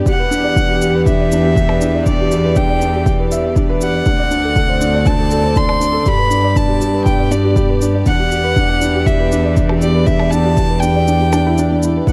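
Heard in a small room, this hypnotic, melancholic piano-and-strings electronica fragment sets a felt-muted upright piano riff, soft and mellow with audible action noise, over a bowed double bass section with a reedy gut-string tone that pumps with sidechain compression. A dark, intimate violin sings the melody sul tasto with light vibrato, while a bright, earthy chamber string section sustains chords in the background through Em7, D7 and G. A punchy, layered electronic kick and produced shaker and percussion blips drive the groove until the kick drops out at 11.1 seconds.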